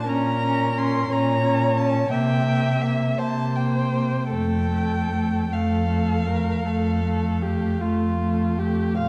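A slow, lyrical classical movement for string quartet opens with muted violins and viola sounding together, joined a moment later at 0.1 seconds by the cello, all four players bowing con sordino in F major at roughly 50-60 BPM in a rubato 12/8. The first violin carries the melody, ranging between F4 and C6, with vibrato and portamento, while the second violin shapes a close, veiled line beneath it. The viola supplies a smooth-topped accompaniment with light vibrato between A3 and Db4. The cello sits up front on the bass, its dark tone louder than the violins. Within this fragment of a longer piece, the harmony moves from Bbm to C7 at 2.1 seconds and settles on F at 4.3 seconds, all wrapped in a wet scoring-stage reverb and a warm production.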